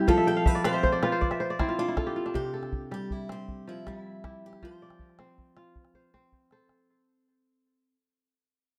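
Ringing, crisp kora arpeggios sit up front in this flowing, joyful West African string and xylophone piece at 106 BPM in a straight 12/8, opening with a kora fill from 0.1 to 2.4 seconds as a boxy, old ladder-braced acoustic guitar picks the melody, both touched with tape echo, over deep, close calabash percussion that adds a drum fill from 5.9 to 6.9 seconds, all moving through F and C in a dark, warm, reverb-soaked production that fades out across this excerpt.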